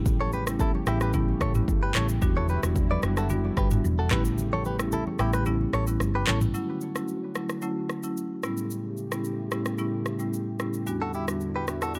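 Set in a digital ambience, this sunny, romantic afrobeats excerpt at 111 BPM in A mixolydian pairs an up-front, woody rosewood marimba with a smooth, detuned sawtooth pad with chorus. Beneath them, a produced electronic drum kit of deep kick, handclaps, rim click, shaker and toms drives along, with its kick muted between 4.4 and 6.5 seconds. A round, punchy hollow-body bass, very quiet low-tuned congas and a twangy, compressed clean guitar riff with delay all drop out around 6.5 seconds, and the guitar briefly returns at 11.0 seconds.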